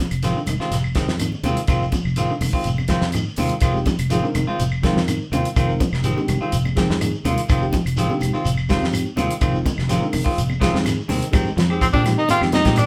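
Funky and intense, this 124 BPM afrobeat excerpt in F dorian rides a dry, fat-snared 70s drum kit and a dark, round fingered bass in a live, moderately ambient room, with twangy, slightly broken-up guitar arpeggios in the background, clean picked guitar stabs, woody claves, a grainy distant shekere and bright high-tuned congas, a reedy electric piano joining at 3.7 seconds, and a clear tenor saxophone melody with light vibrato up front alongside a vintage trumpet second line arriving at 11.8 seconds, all over an Fm7 chord.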